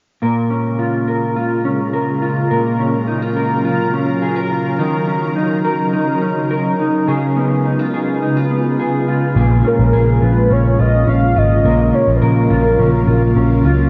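This dream pop excerpt drifts at 105 BPM in an ethereal, haunting mood, cut from a longer piece and bathed in a huge ambient reverb with a dark top end. A mellow, clean electric guitar opens at 0.2 seconds with fingered arpeggios through analog chorus and digital delay, joined moments later by a shimmering pad whose detuned, granular sustained chords carry an octave-up glisten. The harmony moves through Bbm7, Gbmaj7/Bb, Ebm7 and Db7 before circling back. At 9.4 seconds a round, foam-muted picked bass arrives up front with an amped, vintage character. A velvety synth lead enters at 9.7 seconds, its smooth sawtooth-and-triangle tone colored by vibrato, chorus and delay as it sings the melody over the returning chords.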